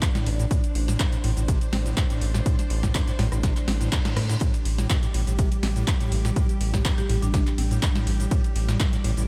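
A squelchy, resonant square-wave acid bass riff sits back in the mix over a deep, round analog bass and a punchy, tape-warm electronic kick up front, in a raw, gritty acid house excerpt at 123 BPM in A minor pentatonic, resting on Am7 with a light 16th-note swing. An overdriven analog drum machine adds crisp snare, metallic hats, handclaps, rim click, cabasa and ride, backed by a very quiet, dusty sampler-style kit of snare and ride, while a lush vintage string machine holds sustained chords with ensemble chorus and sidechain pumping. A reverse cymbal appears in the background from 3.7 to 4.4 seconds, and a woody hard-mallet marimba slips in briefly at 7.0 seconds through a diffuse ambient delay.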